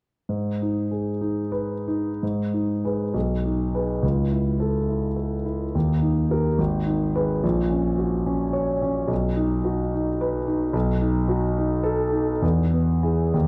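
A solo concert grand piano opens at 0.3 s, its tone clear and polished with a deep bass and long sustain, sitting up front in a stormy, brooding romantic character piece in a flexible, rubato 6/8. After a brief opening, a longer passage begins at 2.2 s and runs to 13.5 s, moving through G# minor harmony before settling toward major chords. The moderate concert hall reverb and dark production wrap the piano, and this fragment is cut from a longer piece.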